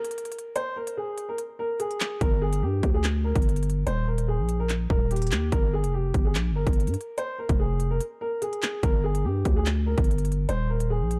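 A growling, buzzy 808-style bass sits up front in this cold, dark drill excerpt, entering at 2.2 seconds and spanning Eb1 to G2 with a fast attack and a sine-based tone that decays after each hit. The track runs at 145 BPM in 4/4 with a half-time feel, set in G phrygian and moving through Gm, Eb and Fm before landing on an Eb5 chord near the close. An electronic drill kit plays throughout, its overdriven sound built from a hard-clipped kick, crisp hi-hat and handclaps. A concert grand piano carries the melody between G4 and C5, its mellow, boxy tone, deep bass and long sustain also placed up front. The production is dry and warm, with a break opening the piece before the bass arrives and another short break at 8.0 seconds.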